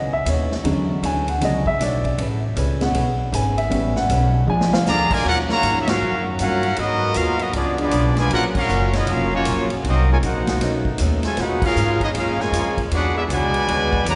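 Big band swing at 156 BPM with a sultry, dramatic mood, this excerpt opens on a dark, vintage baby grand piano solo over woody, growly pizzicato upright bass, a clean hollow-body archtop guitar in the background and a natural, punchy drum kit that enters at 0.3 seconds. After a drum fill, the clear trumpet section takes the melody at 4.9 seconds with a tight trombone section on a second line, while a very quiet mellow trombone section sustains chords as the music settles into Eb minor and the piano drops out. Band accents punctuate the swing, and the whole ensemble sits in a lush church-like reverb with a softened top end.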